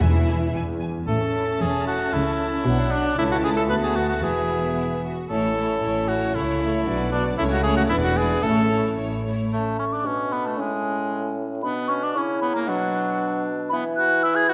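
A quick classical-period movement for symphony orchestra in A major, this stormy, urgent passage moves at 114 BPM in a straight 2/4 and is cut from a longer piece. The strings carry it from the start: a warm violin section sings the melody with vibrato and expressive portamento, a clear, intense second violin section adds a background line, and rich, lush violas fill in the accompaniment over smooth, even cellos and focused double basses. Timpani struck with hard mallets on calf heads sound articulate but sit in the background, marking the opening moment and returning briefly at 8.4 seconds. At 1.1 seconds a solo clarinet and an up-front cor anglais with a smooth top join with second lines, while a mellow, punchy bassoon adds accompaniment from a distant, roomy position. As the strings stop at 9.5 seconds, a pure, hollow concert flute, tongued and played with vibrato, sits above the woodwinds, and the harmony reaches a Bm9 and a C#m7 before the music breaks off. 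A moderate stage reverb and a layer of vinyl crackle round out the recording.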